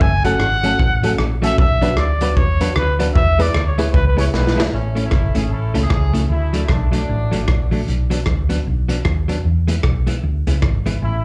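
A swung 152 BPM ska pulse in 4/4 opens this cheerful, joyful live club cut, with a raw garage drum kit of boomy kick, rim click, snare and hi-hat sounding gritty and saturated up front, beside a dark, round hollow-body bass that runs to 11.2 seconds. A breathy, whispered trumpet takes a solo on the melody for the first 4.7 seconds in A major, intimate and vintage with vibrato and a slapback echo, while a clean, scooped electric guitar and a worn, slightly detuned upright piano add accompaniment and short woody stabs over chords moving from F#m through Bm to E. A drum fill at 4.3 seconds leads into the second section, where the trumpet and piano drop out and a mellow, distant horn section takes the tune with slapback and tape echo, returning briefly at the very end. The guitar keeps playing under the changes from A through D, Bm and E, and the whole thing is heard through the venue's PA with a touch of club room sound.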